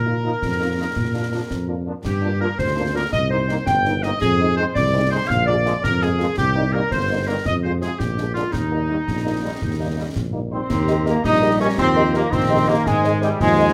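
This is a proud, festive military-style march for wind band in 6/8, moving at 111 beats per minute counted in dotted quarters, in E-flat major, and taken from a longer piece. The trumpet section carries the melody with a warm, roomy tone that sits distant in the background, while a clear woodwind section with light vibrato plays a second line up front. A mellow tuba anchors the bass close to the listener, the French horn section adds a vintage-sounding accompaniment, and a tight trombone section holds bright sustained chords, with concert snare drum, concert bass drum and clash cymbals giving an acoustic sound and bright cymbals. The harmony passes through Gm7, Cm7, Fm7 and Bb7 before settling on E-flat at 8.5 seconds. A hollow, wooden piccolo with a crisp attack and vibrato joins at 10.5 seconds, and a dark, smooth-topped euphonium follows at 11.2 seconds, both adding lines from the background. 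The band sounds detailed and closely recorded within a moderate, large studio reverb.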